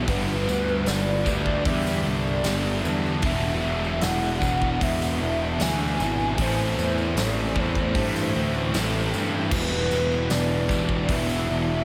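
Hazy and dreamy, this short cut from a longer shoegaze and dream pop rock piece drifts at 76 BPM in E minor through G6, E7, Am7 and Em7, soaked in a huge ambient reverb. A growly, up-front fuzz bass sits under a thick fuzz guitar with ensemble chorus, a crunchy overdriven guitar with reverse reverb, a very quiet double-tracked distorted guitar and a faint, twangy guitar picking arpeggios through a small old amp. A big-room acoustic drum kit with a punchy kick and a jingly background tambourine carry the pulse, while a pure, round sine lead with chorus and delay floats the melody over the top.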